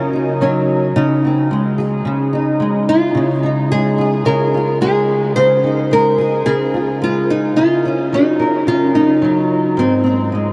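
This short acoustic pop excerpt opens on a small, up-front nylon-string guitar carrying the melody between C4 and C5, its fingerpicked line dressed in lush chorus and analog delay, with the odd finger squeak audible. Beneath it, an old ladder-braced acoustic guitar, double-tracked and fingerpicked, supplies the accompaniment from Ab2 to Bb4 with a dark, woody, boxy tone and the dull ring of old strings. Both guitars play throughout the 10.5 seconds at a straight 109 BPM in 4/4, in Db major tuned to A4 = 436 Hz. The harmony moves from Ebm/Db and Ab/Db to a lingering Dbadd9, then returns to Ebm/Db before landing on Ab at 9.8 seconds. A huge ambient reverb with a 9.3-second tail soaks the dreamy mix, lending the sunny, heartfelt mood a hazy glow as the passage cuts off mid-piece.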